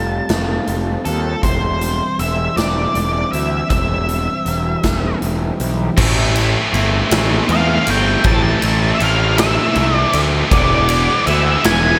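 A big arena sound wrapped in a lush hall reverb frames this dark, angsty quiet-loud alternative rock piece in A minor, moving at 53 BPM in a straight 6/8 as Fadd9 and C/E give way to Am and E. A dark octave-fuzz lead guitar carries the melody throughout, over a growly, up-front fuzz bass and a punchy, natural-sounding rock kit that enters at 0.3 seconds, while a slightly broken-up guitar from a small old amp picks chorused, slapback-echoed arpeggios until 6.0 seconds. At that point a scooped high-gain guitar and a tight, bright distorted guitar take over with background riffs, thickening the heavier half of this excerpt from a longer piece.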